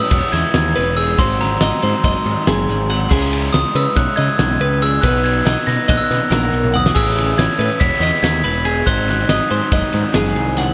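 Bright and wistful, this math rock and midwest emo excerpt moves at 281 BPM in eighths through a straight 9/8, cut from a longer piece. A glockenspiel struck with soft plastic mallets carries the melody in a mellow, bell-like ring, while a clean, twangy twelve-string electric guitar spins compressed arpeggios beneath it. Further back, a double-tracked overdriven guitar plays a biting riff, and a growling picked bass with overdrive anchors the low end. A loose, acoustic drum kit sits up front with a punchy kick, fat snare and dark cymbals in a pumping studio room, adding a drum fill at 6.6 seconds. Light reverb surrounds the band as the chords pass through Emaj7, G#7, C#m9, Bmaj7 and Amaj7 before returning to Emaj7 and G#7.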